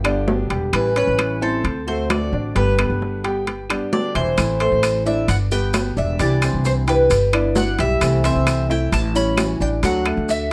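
Closely and crisply recorded with a light reverb, this sunny, danceable excerpt of Cuban son and guajira in G major moves at 132 BPM, with a fingerpicked nylon-string guitar and a clear, worn grand piano playing long-sustained arpeggios over a thumpy, up-front pizzicato upright bass, dry ringing metal-shell timbales and woody claves in the background, while a metallic, double-strung Cuban tres picks the melody from 0.7 seconds and grainy, distant maracas join at 4.4 seconds.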